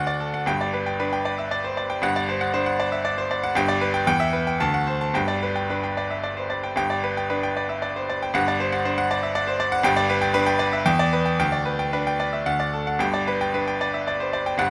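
Classical virtuoso piano study in G major and 3/4, a brilliant, sparkling excerpt at a rubato 108-122 BPM in which a solo grand piano, ranging from G1 to A5, sounds bright, intimate and up front with long sustain and audible action noise, caught by close, detailed microphones in light reverb as its harmony circles between G, D7 and E minor across two statements of the same theme before settling on G at 13.0 seconds.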